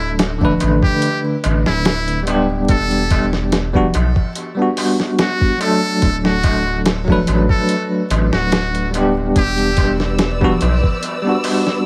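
Dark and melancholic, this trip hop excerpt at 72 BPM in E minor sets a buzzy, metal-muted trumpet melody over bell-like tine electric piano with tremolo and tape echo, a round analog bass, a gritty, compressed sampler-style drum kit with thumpy kick and distant crisp darbuka, all under light reverb and vinyl crackle, before a lush bowed violin section enters at 9.4 s and a flickering granular texture appears at 9.8 s as the D and Em7 chords alternate.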